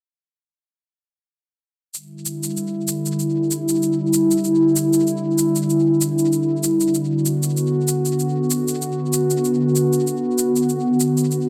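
Meditative and hypnotic, this organic downtempo piece at 96 BPM in E minor, cut from a longer work, opens with a soft, tape-warm electronic shaker with tape echo at 1.9 s, followed at 2.2 s by an up-front, warbling, nostalgic lo-fi pad with a dark vintage sawtooth-and-triangle tone, chorus and its own reverb, holding long Em7 chords before moving to D6 at 6.9 s, all set in an echo-heavy mix drenched in a wet spring reverb.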